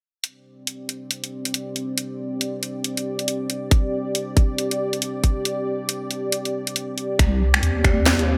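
Bright 1980s-style digital production with light reverb frames this brooding, heavy excerpt of deep dubstep in C minor at 138 BPM with a swung half-time feel, where a garage kit of finger snaps, hi-hat and a cracking, gate-reverbed snare sits up front alongside a moody, detuned sawtooth pad with chorus, a tight electronic kick joins at 3.7 seconds, and a deep, soft wobbling bass with sine-like roundness arrives at 7.2 seconds.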